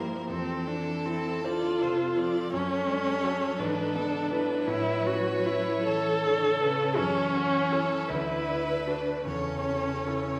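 A slow, tender romantic movement for piano quintet opens with the full ensemble in a lyrical, rubato 6/8, where a rich, focused violin carries the melody with smooth vibrato over a clear, deep-bassed concert grand with a vintage character. A dark, expressive viola sits up front in the accompaniment with portamento, while a soft-attacked second violin in the background and a distant cello add gently sliding second lines. The reverberant recital hall lends a wet glow to this brief 10.4-second excerpt, cut from a longer piece.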